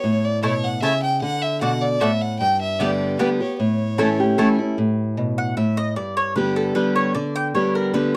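A bowed fiddle with light vibrato and a focused, smooth top carries the melody up front in this lively, rustic bluegrass piece in 3/4 at 152 BPM, set in A mixolydian. A dark, picked steel-string acoustic guitar holds the accompaniment, and a woody, double-strung mandolin adds stabs from 0.4 seconds. A metallic, nasal lap resonator guitar played with slide and fingerpicks offers a brief second line near 4.0 seconds, the fiddle then falls away, and the mandolin takes a solo from 4.8 seconds in a dry, close 1970s-style studio sound with light reverb.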